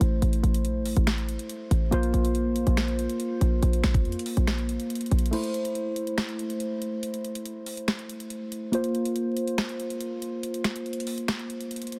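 A half-time trap groove in 4/4 drives this eerie, melancholic hip hop excerpt, built on an electronic drum kit with a knocking kick, sharp snare, bright hi-hats, finger snaps and crash cymbal, while a punchy, tight 808-style bass with a sine body and fast, decaying attack sits beneath until 5.3 seconds. Muted, felt-like synth keys carry the accompaniment throughout, dark and intimate with a soft, ring-modulated tone thickened by chorus and low-pass filtering. When the bass drops out for the break at 5.3 seconds, a filter sweep moves across the keys over shifting Am and Bbsus2 chords, all set in a dry, dense, heavily limited master dusted with vinyl crackle.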